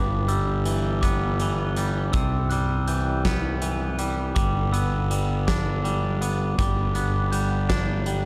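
Post-rock in G major at a slow 54 BPM in 6/8, this soaring, euphoric fragment of a longer piece opens with a twangy, clean electric guitar playing arpeggios up front through tape echo, a bell-like glockenspiel struck with soft plastic mallets ringing arpeggios in the background with tape echo of its own, and a growly fuzz bass driven with overdrive, before a huge arena drum kit with a fat snare and punchy kick enters at 0.3 seconds, all moving through Em7/G, Cmaj7 and G in a dark, warm production with light reverb.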